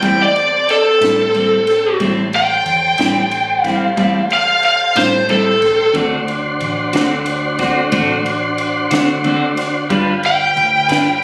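Slow blues in 12/8 at 61 BPM, this soulful, gritty passage is cut from a longer piece and built around a lead electric guitar solo that runs its full 11.2 seconds. The lead guitar, pushed through a small cranked amp, sits up front with a picked, overdriven tone and plate reverb, ranging from A4 to G5 over chords that move from Am7 to D7 at 6.0 seconds and G7 at 9.9 seconds. Beneath it, a clean electric guitar, also up front, adds picked, compressed, scooped accompaniment colored by harmonic tremolo, while a tonewheel organ holds smooth sustained chords through a slow rotary speaker and chorus vibrato. A vintage fingered electric bass gives an amped, round, foam-muted bottom, and a compact cocktail drum kit plays kick, snare and ride with a dry, acoustic sound, dark cymbals, a high-tuned snare and a punchy kick. The band sits in a moderate club reverb, captured on a phone in the room with added studio reverb and compression.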